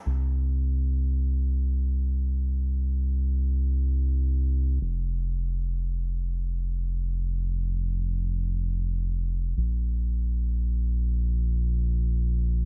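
Heavily compressed with a radio-like quality and very little reverb, this short passage cut from a longer chillout piece sits dry and close. A single round analog bass carries the whole fragment from 0.1 to 12.7 seconds, moving in free time through a deep register between F1 and C2. Its tone blends sawtooth, sine and triangle waveforms into a dark, evolving sound that stays up front in the mix. Notes speak with a fast attack and then hold, giving the line a sustained, enveloping weight. The mood is relaxed and blissful, a calm, shifting bed of low-end tone.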